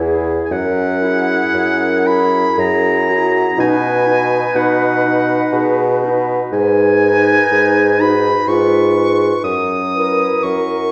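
A punchy, smooth-topped bassoon with light vibrato sits up front on the bass line of this serene, lyrical slow romantic movement for wind quintet in B major, moving at 61 BPM in a rubato 3/4 with uneven beats. A bright oboe with light vibrato enters at 0.5 s as an up-front second line high above, while a pure, tongued concert flute with vibrato carries the melody from a distance and a mellow French horn and roomy clarinet add accompaniment in the background. A wet recital hall reverb places the quintet further back in the room as the harmony drifts from E through G#m toward F#7, in this fragment cut from a longer piece.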